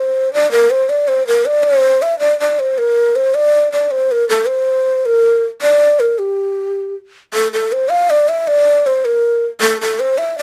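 A solo shakuhachi carries this brief fragment of Celtic folk, its breathy, hollow bamboo tone sitting up front with a crisp, chiffy attack and a straight, unwavering sound across a range from G4 to F5. The mood is wild, dark and lively, moving with a straight 6/8 feel at 106 beats per minute, with the tune shifting into a new section at 7.3 seconds before breaking off at 10.4 seconds. Close, detailed miking captures every breath, while light reverb adds just a touch of space.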